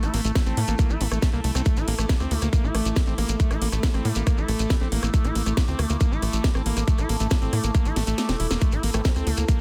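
A driving straight 4/4 pulse at 138 BPM powers this intense psychedelic trance excerpt in A phrygian, where a tight, punchy sequencer bass and an up-front electronic kick entering at 0.4 s push beneath a squelchy, distorted acid bass riff with dub echo, a techno kit of cracking snare, rim clicks and metallic hats, a grainy shekere, a bright overtone-sweeping drone and a nostalgic, warbling lo-fi pad pumping in the background, while a drum fill arrives at 8.0 s, the kick dropping out from 8.2 s, and a faint, nasal wobble bass slips in at 8.9 s.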